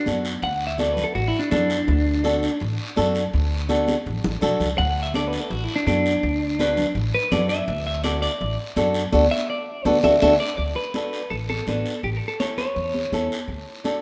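A bright, twangy clean electric guitar opens this festive cumbia fragment at 166 BPM in D major, carrying the melody as a solo through the first 10.6 seconds with a touch of spring reverb, pausing at 2.6 seconds and returning at 4.8. Beneath it, a fingerpicked flamenco guitar with fresh strings supplies up-front accompaniment, while a woody pizzicato upright bass anchors the low end. High-tuned congas with a thin skin sit in the background, and a raspy, distant guiro adds texture from a large room. A drum fill breaks in between 3.7 and 4.8 seconds, and the band hits an accent shortly before the section changes. The harmony rests on D before moving to A and back to D near the close, all set in a moderate plate reverb that gives the danceable groove an open, lively space.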